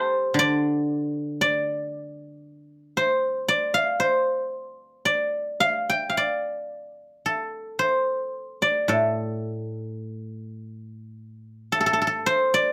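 A solo guzheng, played with fingerpicks and sitting up front with a silvery, ringing tone, unfolds in free rubato across a span from A2 to G5 in this longing, contemplative Chinese traditional fragment, cut from a longer piece and set in light reverb.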